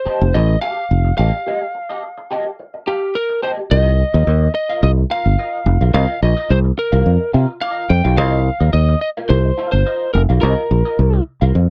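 Funk in C dorian at 107 BPM with a funky, sly mood, this short cut from a longer piece sets a bright, twangy, lightly driven lead guitar melody over a growly, punchy fingered bass up front and a slightly broken-up rhythm guitar colored by wah and chorus, moving from F9 through a break at 1.5 seconds to Cm7 at 3.7 seconds in a dry, close 1970s-style studio sound.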